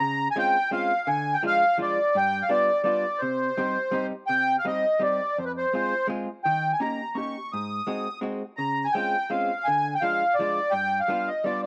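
An accordion leads this short musette waltz, its reedy, sweet voice sitting up front with a light tremolo tuning that gives it a gently shimmering edge. Beneath it, a vintage hollow-body electric jazz guitar plays a dark, clean, picked accompaniment, compressed and set lower in the mix. The tempo is a brisk 168 BPM in 3/4 with a light swing on the eighth notes, giving the piece a whirling, nostalgic feel. The harmony moves through jazz-tinged changes such as Dbmaj7, Ddim, G7 and Cm, with a repeated phrase beginning again at 4.3 seconds. Both instruments play throughout the 11.7 seconds, captured on cassette at home with a light reverb and a touch of studio ambience that lend the sound a worn, intimate character.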